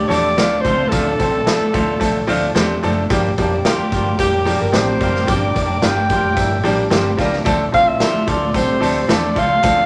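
A subtone alto saxophone with a vintage jazz flavour carries the melody up front in this joyful, uplifting excerpt of uptempo 1960s-style soul at 110 BPM in straight 4/4, moving from Dm7 to Gm7 at 3.1 seconds and back at 7.5 seconds. A brilliant, woody upright piano with audible action noise plays close-up accompaniment over a saturated, gritty garage drum kit with a boomy kick and pumping room sound, a dark, round, foam-muted fingered bass, and a slightly broken-up, lo-fi electric guitar riff in the background. Very quiet lush strings with portamento, a ringing vibraphone with slow motor vibrato and a jingly tambourine fill out the moderate club reverb, while a punchy horn section adds a brief line at 6.9 seconds during a band accent.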